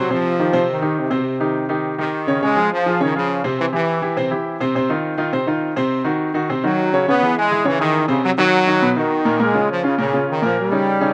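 Recorded outdoors with a light reverb, this sunny, danceable latin cut from a longer piece moves at a brisk 206 BPM in straight 4/4. A bright, polished grand piano accompanies throughout, intimate and up front with audible action noise, short sustain and a slapback echo, moving through chords such as Cmadd11, Dbmaj7 and Eb7. A brilliant, tight trombone section carries the pop-style melody with light vibrato, pausing at 4.3 seconds before returning at 6.6 seconds.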